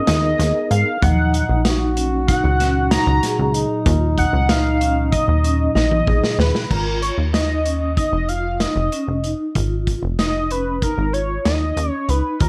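A bold, retro octave-doubled lead opens this tense, intricate progressive instrumental, its detuned sawtooth tone coloured by ring modulation, chorus, phaser and tape echo, and sitting up front over a soft, flute-like tonewheel organ with key click and chorus vibrato in the background. Set in G# dorian, the band drives through an uneven 9/8 at 190 BPM counted in eighths, moving from G#madd9 to D#m and later settling on a bare G#5. A punchy, funky analog bass with a wave-folded filter pluck and a fast, decaying attack anchors the low end alongside a muffled, lo-fi vintage drum kit with a tight kick, a medium-tuned snare and a rolled-off top. A metallic vibraphone played with medium mallets rings out arpeggios under a fast motor vibrato, while a breathy, whispered trombone enters at 1.0 s with an intimate, close-miked second line carrying light vibrato. A drum fill at 5.8 s leads into the next section, where the organ drops out at 6.7 s. 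The whole is placed in light reverb.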